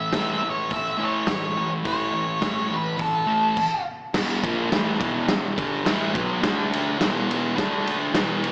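A dark octave-fuzz lead guitar and a thick, double-tracked fuzz guitar riff on A open this swaggering, rowdy garage rock excerpt at 105 BPM in 4/4, joined at 0.1 s by a punchy, rolled-off raw garage drum kit with crash, hi-hat, kick, ride and a medium-tuned snare in a bright stone room; after a brief stop at 3.6 s the lead is gone, and the riff and drums push on through E5 and D5 chords, the recording framed by moderate spring reverb and a small speaker sound.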